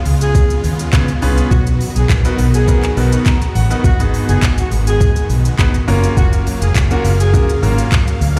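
Heard through a big sound system in a bare room with large studio reverb, this bittersweet, driving dance-pop excerpt pairs a pumping wall of huge, detuned supersaw chords with a dark, foam-muted vintage electric bass and a smooth, up-front R&B drum kit of soft kick, hi-hat, shaker and handclaps, while a light-vibrato horn section carries the dub-echoed melody, a clear grand piano enters at 0.9 s and adds a fill at 3.0 s, and a very quiet group handclap sits at the back.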